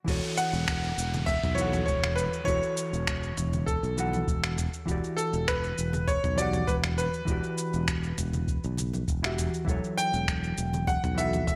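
A dark, clean hollow-body jazz guitar opens this wistful, relaxed sunset chillout piece, its fingered accompaniment carrying a touch of delay, at 100 BPM in a straight 4/4. Almost at once a growly, sustaining fretless bass settles low beneath it, joined by a deep analog-style electronic kick and a gritty, tape-warm, compressed sampler-style kit of cabasa, crash cymbal, finger snaps and toms, treated with gated reverb. An electronic downlifter sounds faintly in the background until 4.9 seconds, while very quiet bongos and congas add a small-room acoustic texture from 0.4 seconds. The melody belongs to a brilliant, up-front concert grand piano, bright yet slightly worn, with a delay that lingers behind its phrases. The harmony moves from F#m7/E to Em9 at 4.6 seconds and back again, all wrapped in light reverb and a bright 1980s-style digital sheen, as this cut from a longer piece drifts by.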